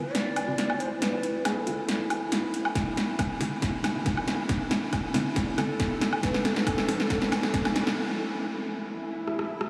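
Meditative and heavy, this half-time deep dubstep excerpt pairs a breathy, hollow ney melody, low-pass filtered and dub-echoed, with a moody detuned analog pad, muted chorus-and-phaser chord stabs, a very quiet wobbling sine-and-triangle bass, an up-front overdriven drum kit of punchy snare, metallic hats, rim click and woodblock, and a layered electronic kick, building through drum fills and chords of D5, Cadd9 and F to a break at 8.0 seconds where an electronic swell enters into a dreamy, reverb-soaked space.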